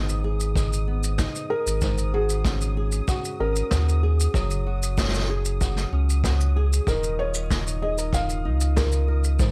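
Intimate and delicate, this folktronica excerpt in Eb minor moves at 95 BPM in a straight 4/4 over a dry mix, where fingerpicked flamenco guitar arpeggios with tape echo sit above a deep, round sub bass with tube saturation, a flickering, grainy texture hovers in the background, brushed shaker and snare are soon joined at 0.6 s by a punchy brushed kick with a rolled-off top, and from 1.5 s a soft, felt-muted upright piano carries a mellow, vintage-toned melody through its own tape echo.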